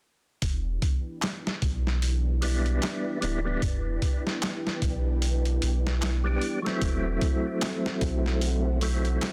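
A swung, sampler-style boom bap beat at 75 BPM, with a thumpy kick, medium-tuned snare and small-room ambience, drives this hypnotic, brooding trip hop fragment in E minor, where a round, deep dub sub bass sits up front beneath dark string-machine cellos carrying ensemble chorus, 12-bit grit and a filter sweep, a crisp metal-shell darbuka enters in the background at 1.2 seconds, and a percussive tonewheel organ with fast rotary speaker, tremolo and tape echo joins at 2.4 seconds, as the harmony moves from Em7 to F#m7b5 at 6.8 seconds in a dry, dense, heavily limited mix.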